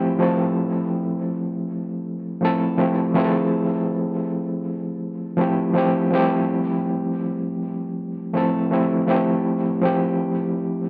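A lazy swung sixteenth-note feel at an easygoing pace sets up this short, relaxed and soulful R&B fragment cut from a longer piece. The only part is an overdriven reed electric piano, playing alone and up front from the start to 10.9 seconds, in a range from F3 to A4. Its tone is reedy and barky with a gritty bite from being pushed through a combo amp, and a fast tremolo plus tape echo give it a shimmering, restless edge. The opening is coloured by a lush Fmaj9 chord, and the music moves into a new section at 9.1 seconds before the fragment ends. A moderate studio reverb and the sense of a band playing live in one room lend the sound an intimate, unpolished character.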